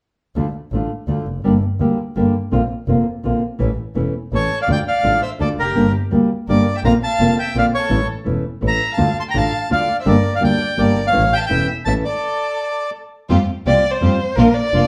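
A rubato tango in three, this passionate, tense excerpt opens with thumb-plucked nylon-string guitar, its finger squeak audible, and a clear, smooth bowed double bass up front, joined at 4.3 s by a distant, expressive violin with portamento and at 4.4 s by a reedy, airy bandoneon carrying the melody, before a stop at 12.2 s gives way to a brief violin solo over biting, lush string-section stabs in the background from 13.3 s, with wet reverb placing the sound further back in the room.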